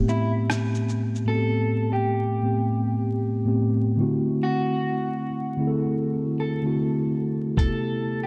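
A swung 76 BPM lo-fi hip hop groove in A minor opens with a mellow, clean tine electric piano with cassette-tape colour carrying the Am9 and D7 chords up front, joined almost at once by a compressed, pitched-down sampler-style kit of thumpy kick, hi-hat, rim click and shaker that drops out at 1.3 seconds and returns briefly at 7.6 seconds, while a dark, slightly broken-up electric guitar plays the fingered melody inside a dreamy, reverb-soaked hall mix dusted with vinyl crackle, making this short excerpt hazy and nostalgic.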